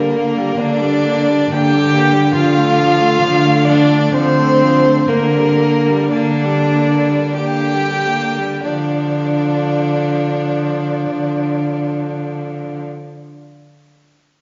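From the first moment a string quartet sounds together in this solemn, melancholic fragment of a slow romantic movement in D minor and rubato 3/4, with two violins carrying the melody and a second line above a rich viola and an up-front cello holding D3, each played sul tasto with airy bowing, soft attacks and light vibrato, while the tempo broadens from 1.0 to 8.6 seconds over Gm/D and Dm harmonies before a brief second section, heard from further back in a reverberant scoring stage with a dark, mellow top.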